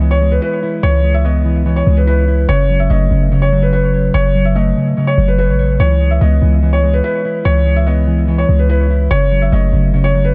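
Hard-hitting and menacing, this half-time trap and hip hop fragment moves at 145 BPM in C# minor, circling between C#m7 and F#m in an echo-heavy mix with studio reverb. A soft, felt-muted upright piano carries the melody with audible action noise, while a dark, clean, fingered electric guitar sits up front as accompaniment, both low-pass filtered and colored by tape echo. Underneath, a deep, boomy 808-style bass with a sine body, a noise layer, a fast attack and a decaying envelope anchors the low end from start to finish.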